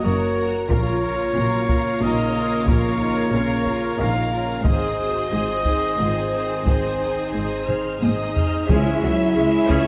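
Dramatic and epic, this cinematic orchestral film-score excerpt moves at 91 BPM in 3/4, with a lush, distant symphonic violin section carrying the melody with vibrato and portamento over a very quiet studio violin second line, a clear viola section, a smooth string section and dark French horn and warm close-miked trombone chords, while mellow trumpets add tight stabs and clear cellos and double basses hold the bass. Taiko drums struck with heavy sticks drive the music from 0.7 seconds, with soft-mallet timpani on round calf heads entering alongside them and returning near the end, and a drum fill leads into a new section at 8.7 seconds where the harmony turns to C#m and a very quiet, mellow tuba joins the bass. A wet scoring-stage reverb gives the whole ensemble a grand, spacious sound.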